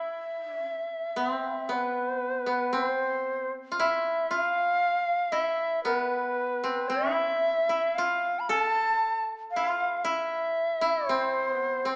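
Japanese traditional chamber music in E miyako bushi, austere and calm, drifting in a free rubato around 58 BPM in 2/4, where an up-front, airy, reedy bamboo shakuhachi carries the melody with vibrato, tongued chiff and rolled-off highs, over a dry, woody koto played with fingerpicks on the second line, both heard throughout this 12-second fragment cut from a longer piece, set in a moderate recital-hall reverb with a small-speaker sound.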